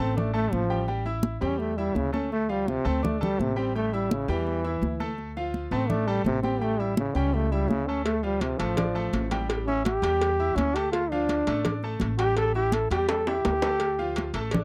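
Salsa at a brisk 167 BPM in D harmonic minor, this passionate, fiery clip from a longer piece puts a warm, punchy trombone up front, soloing with vibrato over a Dm and A chord cycle while a brilliant, short-sustained grand piano and a woody, thumpy upright bass played pizzicato on gut strings hold the groove. High-tuned, damped congas drive from the start, and tight, vintage-sounding cowbell and bongos join at 8.1 seconds, with a drum fill at 13.1 seconds. The dry, close 1970s-style studio sound keeps every part intimate and present.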